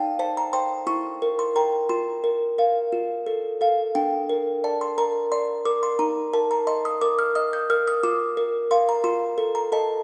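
A delicate, tinkling music box plays alone from the first moment of this tender, dreamy classical lullaby, its plucked, airy tones from a large box sitting up front across a range from D4 to G6. The excerpt moves in a slow, straight 6/8 at 59 BPM in Bb major, drifting from Cm/Eb through Edim7 and Fsus4 before settling on Bb/D and closing on F7. A wet scoring-stage reverb lets each note hang for about 1.4 seconds, and the top end is gently capped, giving the sound a soft, rounded glow.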